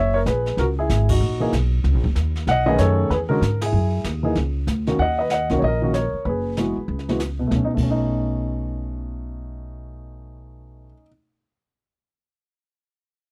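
A close-miked grand piano with a short sustain carries the melody in this sophisticated, warm jazz piano trio excerpt in B major, swinging at a brisk 190 BPM in 4/4 over extended harmonies such as F#13, B13 and D#m7. A woody, thumpy pizzicato upright bass sits up front beneath it, while a brushed drum kit with an airy sound, dark cymbals and a boomy kick plays softly in the background and drops out at 7.8 seconds. The trio hits band accents at 1.1 and 3.6 seconds, all captured in a dry, close 1970s-style studio sound.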